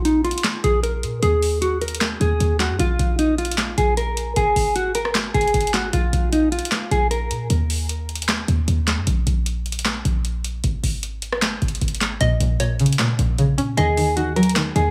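A mellow, clean electric guitar opens this dark, melancholic trap excerpt in Bb minor, its fingered melody carried on tape echo over a short, punchy 808-style bass and a booming analog drum machine. At 153 BPM in a half-time feel, the drums bring a crisp snare, metallic hi-hats, handclaps and rim clicks, with a short room sound on the snare, claps and hats. The bass is tight and sine-based with a noise layer, decaying after each note. The guitar drops out at 7.5 seconds, leaving bass and drums to carry the track until 12.2 seconds, when a twangy, string-like resonator pluck with chorus arrives as accompaniment alongside a hollow, bouncy square-wave pluck treated with chorus and tape echo. The guitar returns briefly at 13.8 seconds as the harmony moves from Bb minor to Eb minor, all set in a light studio reverb.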